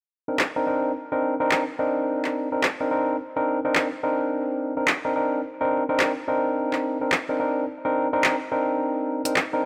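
Set in a light reverb, this funky, swaggering glitch hop excerpt has a swung sixteenth-note feel and sits on a single Cm9 chord throughout. A barky tine electric piano plays up-front stabs from 0.3 s, lightly overdriven through a combo amp and roughened with vintage 12-bit sampler grit, a low-pass filter and dub echo. Beside it, a layered, electronic drum and bass kit enters at 0.4 s with handclaps and bright hi-hats, overdriven and set in a small room ambience.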